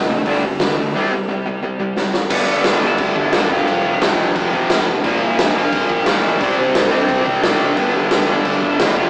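Overdriven rhythm guitar riffs, a growly fuzz bass in the background and a dark, smooth lead guitar melody open this rowdy, upbeat punk rock clip, joined at 0.3 seconds by a gritty, up-front garage drum kit of punchy kick, snare, hi-hat and crash that drives through a break capped by a drum fill, while a second, very quiet and compressed distorted guitar drops out at 2.3 seconds and returns at 7.8 seconds, the whole take carrying the rough feel of a rehearsal-room recording with light reverb and a small-speaker sound.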